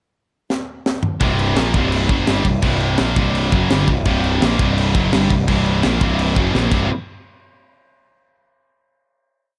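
Dark, warm and dry, this short, heavy, epic metal piece at 169 BPM opens with a drum fill at 0.5 s on a tight kit with a high-tuned snare and tight kick; at 1.2 s a power-chord riff on C5, touching briefly on Bb5, kicks in on a bright high-gain guitar, a scooped high-gain guitar and a sludgy, double-tracked overdriven guitar sitting in the background, while an up-front, growly fuzz bass drives eighth notes doubling the riff, before a final hit at 6.9 s.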